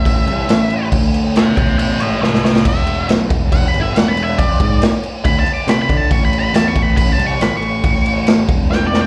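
Swaggering and raunchy, this short cut from a longer piece is blues rock power trio with a southern rock streak, driving along in a straight 4/4. An octave-fuzz lead guitar takes a solo through the whole passage, its dark, distorted picked tone carried by plate reverb and slapback echo. Beneath it, a fuzz picked electric bass sits up front, overdriven and punchy, sounding direct and amped. The raw garage drum kit hits hardest, with a punchy kick, a medium-tuned snare and crash cymbal in a small, pumping room, its saturated, gritty sound rolled off at the top and given its own slapback echo, with fills at 2.2 and 8.7 seconds. The changes move from A through E5, Dm6 and A5 to Esus4, and the whole performance comes across as a live gig heard through the venue's PA, with a touch of club reverb.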